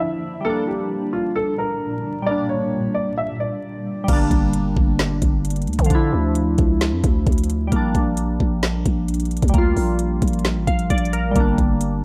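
A dry, gritty recording with vinyl crackle and a digital sense of space frames this brooding, menacing slice of half-time trap. It opens on a dark, worn grand piano carrying the melody up front, mellow and intimate with audible action noise, softened by a low-pass filter and tape echo. Beside it, glassy digital keys play a warbling, vintage-toned accompaniment through chorus and a filter sweep, while a granular cloud pad sustains blurred, detuned chords that slowly evolve in its own reverb. At 4.1 seconds the piano and pad drop away as a growling, buzzy 808-style bass and a trap kit arrive, the kit pushing a knocking kick, woody snare, crisp hats and crash cymbal to the front. The keys carry on above this heavier groove until the fragment closes at 12.0 seconds, circling chords such as Bb6, Gm and Dmadd9.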